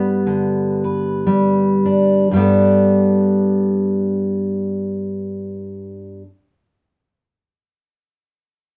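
A fingerpicked steel-string dreadnought acoustic guitar sits up front, its full-bodied tone carrying this short folk fragment on its own from 0.0 to 6.3 seconds. The mood is gentle and hopeful, set at a slow 56 BPM in 4/4 with a light swing on the eighth notes. The guitar plays in G major, opening on a Gadd9 chord and ranging from G2 up to B4 as it accompanies. The first 2.3 seconds slow down before the music moves into a second section that runs to the end. A moderate studio reverb lends a modest sense of room around the guitar, and the clip is cut from a longer piece.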